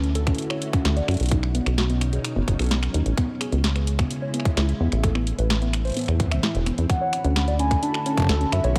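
A silky string machine with ensemble chorus and 12-bit sampler grit holds sustained chords over a rubbery, resonant acid bass and a dry analog drum machine of finger snaps, metallic hats and a tonal snare, joined at 0.3 seconds by a tight, up-front electronic kick. A lo-fi, detuned pluck with cassette-tape colour and tape echo plays arpeggios throughout, giving this wistful, playful IDM fragment a dusty charm. A nostalgic lead with vibrato and chorus carries the melody from 6.9 seconds, and a very quiet pulsing gated texture enters at 7.2 seconds.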